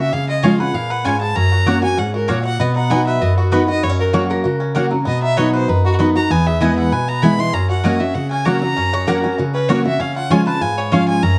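This bluegrass excerpt moves at a brisk 194 BPM in a straight 4/4, with a joyful, virtuosic spirit. A clear, focused fiddle takes the solo from start to finish, bowed close with a light vibrato, while a bright, twangy banjo played with fingerpicks adds its own percussive melodic line underneath. A full-bodied jumbo steel-string acoustic guitar sits up front in the accompaniment, its picking carrying an audible finger squeak, and a woody mandolin punctuates the groove with double-string stabs from 0.4 seconds. A metallic, nasal lap resonator guitar slides in briefly for a second line at 4.1 and again at 8.9 seconds. The harmony circles through C#, F#, B and E across two repeated passages, and the dark, warm production is set in a moderate spring reverb blended with studio reverb.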